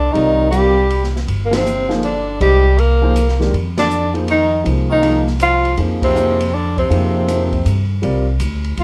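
Modal jazz in C minor at 160 BPM in a swung 3/4, this short excerpt from a longer piece feels spiritual and hypnotic, moving from Cm11 to Fm11 and arriving on C9sus4 at 8.0 seconds. A mellow, vintage-toned tenor saxophone carries the melody up front with vibrato, while a second, brighter tenor sits lower and softer beneath it, adding scooped notes and its own vibrato. The upright bass is plucked, woody and growly with steel-string bite, placed prominently in the mix. A grand piano with long sustain and audible action noise supplies intimate accompaniment from 0.1 seconds, and an acoustic drum kit of hi-hat, kick, ride and snare enters at 0.2 seconds, recorded in a small room with dark cymbals, a boomy kick and a rolled-off top. The band hits accents together at 1.5, 3.7 and 6.0 seconds, all within a light reverb.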